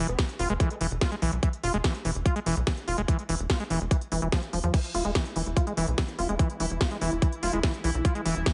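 Heavily compressed, radio-like sound with light reverb and a dulled top end frames this intense, driving psychedelic trance fragment, where a layered electronic kick sits up front beside a techno kit of cracking snare, smooth hi-hats and crash cymbal. A squelchy, gritty overdriven acid bass riff with sidechain pumping and digital delay rides over a punchy, wave-folded sequencer bass, while a nasal, very quiet vowel-sweep wobble bass surfaces briefly at the start and again from 6.0 seconds. From 4.7 seconds a bright, pulsing gated texture of sustained chords joins in the background, carrying chorus, reverb, 12-bit sampler grit and its own sidechain pumping.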